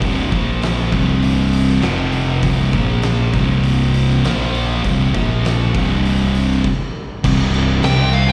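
A straight 4/4 pulse drives this sludgy, hypnotic stretch of stoner and doom metal, cut from a longer piece. Two thick fuzz guitars grind through a low riff together, one of them carrying a slapback echo, while a round, overdriven picked bass sits up front beneath them. An oversized, low-tuned acoustic kit pounds along with a punchy kick, a fat snare, hi-hat and dark crash cymbals, its tone saturated and gritty. The band breaks into a stop at 6.6 seconds and returns at 7.2 seconds as a solo section begins, and a dark fuzz lead guitar enters high above at 7.8 seconds. The performance sounds like a live gig heard through a venue's PA, soaked in small-room and recital-hall reverb.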